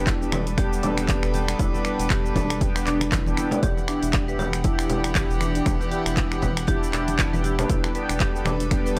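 Punchy, tape-warmed electronic kick drives this earthy afro house excerpt at 118 BPM with a 16th-note swing, joined by a house kit of cabasa, finger snaps, handclaps and hi-hats in a small room, and congas tucked in the background. A round, deep analog bass holds E1 beneath reedy, gut-string chamber strings sustaining chords and mellow, detuned synth brass stabs with chorus and analog delay, all three pumping with the sidechain over G/E and Em7. Woody marimba arpeggios with 12-bit sampler grit and delay enter at 0.1 seconds, adding a bright edge to the dry, gritty hardware sound.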